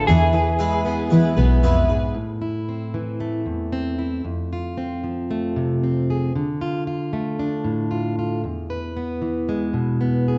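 This wistful, bittersweet folk excerpt in A harmonic minor at 114 BPM opens with a lo-fi, slightly broken-up electric guitar melody, treated with tremolo and slapback echo, over a shimmering, octave-doubled twelve-string with lush chorus and a woody, full-bodied fingerpicked steel-string acoustic sitting up front. A veiled, bowed double bass, played con sordino with vibrato and a soft attack, joins the low end until 2.1 s; from 2.2 s the fingerpicked acoustic carries on alone through Am, F, Dm and E until 10.4 s. A wet recital hall reverb surrounds the parts, and the top end is rolled off.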